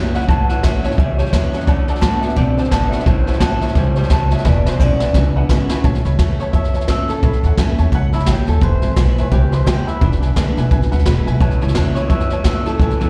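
Rockabilly with an upbeat, retro feel at 173 BPM in swung 4/4 and A major, this live-sounding excerpt pairs a twangy, slightly broken-up, lo-fi electric guitar melody carrying slapback and tape echo with a second twangy electric guitar riff that drops out at 5.8 seconds and returns at 11.4. Beneath them sit a thumpy pizzicato upright bass, a distant, roomy brush drum kit that plays a fill before the second section, a boxy ladder-braced acoustic guitar in the background, and an intimate upright piano whose action noise is audible.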